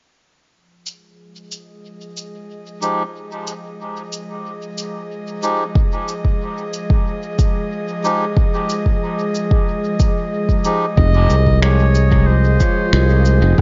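Meditative and deep, this ambient dub passage in F minor moves at 92 BPM in a straight 4/4, opening on an Fm7 chord as an airy, breathy pad with chorus fades in from 0.5 seconds, joined by electronic shaker and finger snaps trailing dub echo and dark, reedy melodica stabs filtered and echoed. A deep, tape-touched electronic kick sits up front from 5.8 seconds, and at 11.0 seconds a growly, direct fingered electric bass and a clear, classical-style clarinet melody with dub echo arrive together. A bubbling, resonant stepped-filter texture with chorus and reverb murmurs in the background near the close of this echo-heavy, lightly reverberant mix, which is cut from a longer piece.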